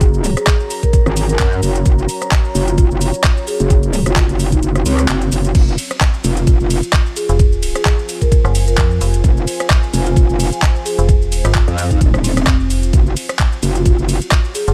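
Bass house at 130 BPM in F phrygian, with a swaggering, gritty mood and a swung sixteenth-note feel. A knocking electronic kick sits up front alongside a garage kit of metallic hats, handclaps, rim clicks, shaker, ride and crash, both carrying a tape-warm, layered character. The kick drops out briefly at 4.6 seconds before returning. A saturated, chorused wobble bass drives the low end with a metallic, aggressive snarl and sidechain pumping, and at 7.3 seconds a second, more mellow FM bass with a decaying, digital tone joins it. In the background, a soft-mallet marimba with delay plays a woody, round melody from 0.4 seconds, while a deep, moody pad of detuned sawtooths warbles with chorus, reverb and its own sidechain pumping. The harmony moves from Gb to Fm and back to Gb, and the dry, close mix suggests a cut from a longer piece.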